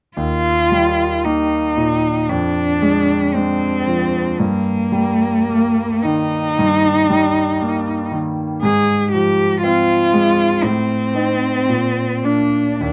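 Close, detailed microphones and a light reverb give this recording an intimate sense of presence, with both players heard up front. It is a lyrical, warm romantic classical duo for cello and grand piano in 4/4, played with rubato and uneven beats, and tuned slightly low with A4 at 437 Hz. The rich, bowed cello carries the melody from 0.2 to 12.9 seconds, a single expressive player using vibrato, portamento and a soft attack in its middle register. Beneath it, the clear grand piano accompanies throughout, its smooth, vintage tone and long sustain reaching down into the bass. The harmony moves through shaded diminished and minor colours before settling on a Bb chord at 11.7 seconds, and the passage is cut from a longer piece.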